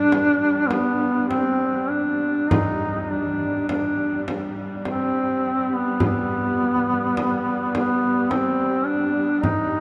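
Unhurried and rubato in 3/4 at roughly 50-54 BPM, this solemn, longing Caucasian lament in G major, cut from a longer piece, sets an up-front duduk singing with vibrato and scooped notes between B3 and Eb4 over a smooth, bowed string section holding a G3 drone and a hard-handed, saturated frame drum, all bathed in a cathedral reverb with a 7.7-second decay.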